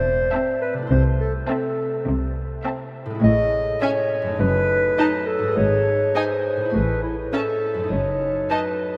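A dark, distant clarinet opens this playful, whimsical film cue in A minor at 103 BPM. Bright, ringing harp arpeggios join it from the start, along with a veiled bass of muted cello and double bass sections, with the double bass sitting up front. At 0.3 seconds, con sordino violins and violas enter, the violins in the background with a light-vibrato melody and a lush second line over the violas' accompaniment, as the chords move from Am through Amaj7 and D#dim/F# to G#, A and D#m7b5/F#. All of this sits in a vast, echoing cathedral reverb, giving a mischievous, quirky fragment cut from a longer piece.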